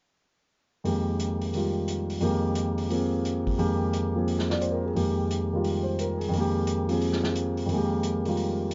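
Searching and spiritual in mood, this short modal jazz fragment, cut from a longer piece, moves in 4/4 with a 65% swing on the eighth notes. A grand piano carries the accompaniment from 0.8 seconds, ranging from F2 to D5 over an Fm11 harmony. Its sound is intimate and up front, with long sustain and the mechanical noise of its action audible. A vintage acoustic drum kit joins at 0.9 seconds on hi-hat, kick and snare, sitting lower in the mix and captured in a small, pumping room, with a punchy kick, a medium-tuned snare and a rolled-off top. Light reverb and a softened upper register give the whole recording a warm, dusky character.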